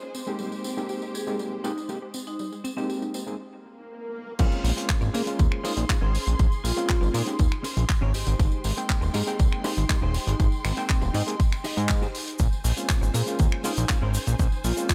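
Nu-disco at 120 BPM in a straight 4/4, groovy and feel-good, cut from a longer piece and moving between Abmaj7 and Bbm9. It opens on bowed, smooth-topped studio strings and a lush, detuned unison pluck playing arpeggios in the background, both under a filter sweep and sidechain pumping, the pluck also carrying cassette-tape color and dub echo. A tambourine enters at 0.1 s, then a gritty, barky overdriven reed electric piano with fast tremolo and dub echo comps through a combo amp, and a ringing hard-mallet vibraphone carries the melody from the back of a boxy small room. The pluck stops at 3.4 s for a short break filled by an electronic swell, and at 4.4 s the drop lands with a punchy, tape-warm layered electronic kick up front, a tight acoustic funk kit with hi-hat, shaker, handclaps, finger snaps and crash, and a fat, wave-folded sawtooth analog bass with its own filter sweep. A clean, compressed fingered electric guitar riff joins soon after, wrapped in analog chorus and dub echo, while a small room reverb holds the groove together.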